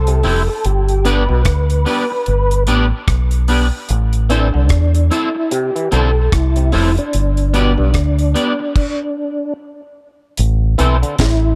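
A nearly reverb-free mix carries this hypnotic, meditative roots reggae excerpt at 74 BPM in A minor, with a gentle swing over an Am and G vamp. A dark, round fingered bass sits up front with tube saturation beneath a dry acoustic kit with a tight kick, high-tuned snare, hi-hat, rim clicks and crash, while a slightly broken-up, twangy electric guitar with ensemble chorus and dub echo fills out the accompaniment and a stringy auto-wah clav plays arpeggios in the background. A mellow tonewheel organ carries the melody through chorus vibrato, slow rotary speaker and dub echo, and the band hits a stop from 8.8 to 10.4 seconds before landing back on Am.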